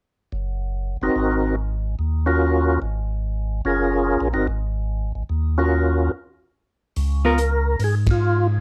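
A swinging 4/4 groove at 144 BPM drives this short soul jazz organ trio cut in Db major, soulful and swinging, lifted from a longer piece. A tonewheel organ carries the bass line from 0.3 seconds, its piping, scooped, clean tone marked by key click and a slow rotary speaker, sitting up front. Just after, a percussive tonewheel organ takes the melody, fat and lightly overdriven, with second harmonic percussion, chorus vibrato and the same slow rotary, moving over chords such as Ab7, Ebm7 and Gbmaj7 with several open stretches where the harmony drops out. After a break, a soul drum kit comes in at 7.0 seconds with hi-hat, kick and ride, its tight kick and dark, rolled-off cymbals pumping in a small booth, as the tune resolves to Db6. A dark, clean, picked hollow-body electric guitar adds a brief touch of accompaniment, and the band hits an accent at 8.0 seconds in a dry sound with little reverb.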